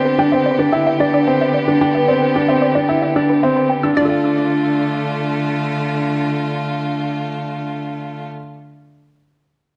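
A wet echo chamber and a small room reverb give this short cut from a longer piece an intimate, enclosed sound with a 1.4-second decay. It is hypnotic piano and strings electronica in D dorian at 111 BPM in a straight 4/4, tuned to A4 = 437 Hz. A vintage-toned grand piano carries a smooth riff through its delay, while a bowed string quartet, one player per line, holds rich, even chords with vibrato, softened by a low-pass filter. In the background, a bright analog pluck with a sawtooth, square and triangle blend, detuning, a noise layer, ring modulation and a filter sweep plays fast-attack, short-decay arpeggios through chorus and delay, then drops out at 4.2 s. The harmony moves from Em7/D to Dm at 4.0 s, where the piano and strings continue together to the end.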